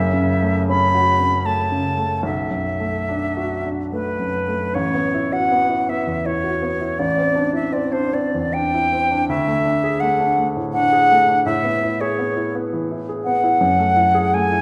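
An airy silver concert flute sings a tongued melody with vibrato over a polished baby grand piano accompaniment in this dreamy, pastoral impressionist classical excerpt in A major, moving in a rubato 3/4 at 70-86 BPM through chords like F#m7, A69 and C69/A, all wrapped in the lush reverb of a recital hall.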